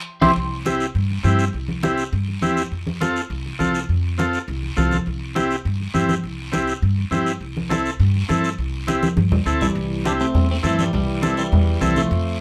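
A twangy, spring-reverbed electric guitar opens with a brief band accent and returns for the closing phrase at 9.6 seconds, framed by a buzzy, up-front combo organ with light vibrato, woody pizzicato upright bass, ringing close congas and a raspy guiro in this sunny, danceable cumbia cut from a longer piece, where a drum fill leads into the last section.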